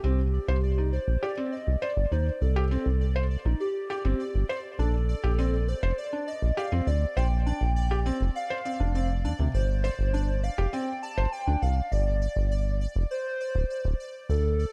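This short IDM excerpt is anchored by a rubbery, resonant acid bass sitting up front, dark and sawtooth-edged, beneath a warbling, detuned lead that carries a nostalgic melody through lush chorus, cassette-tape colour and delay. A soft felt-muted upright piano with audible action noise plays arpeggios until 11.6 seconds, while a faint, bright pulsing texture on a single high note enters at 0.3 seconds, treated with chorus and reverb. At 101 BPM in a straight 4/4, the glitchy, melancholic mood moves through Cm(add9), Bb and Gsus4 in a dark, digital ambience marked by lossy compression artefacts.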